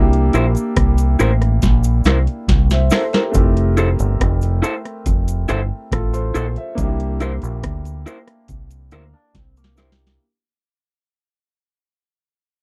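A booming analog drum machine anchors this tender, smooth lovers rock reggae excerpt at 70 BPM in F major, its deep kick, crisp snare and metallic hats pushed up front with overdrive, with drum fills at 1.6 and 9.3 seconds, beside a round, dark dub bass played with the fingers. A slightly broken-up, lo-fi electric guitar plays stabs through a small old amp, while a baby grand piano with long sustain carries the accompaniment over C7 and Fmaj7 chords, and a cabasa sits quietly in the background. A twangy guitar with an envelope filter slips in with faint arpeggios at 8.9 seconds, all in a dry, close 1970s-style studio sound that fades out from 3.3 seconds.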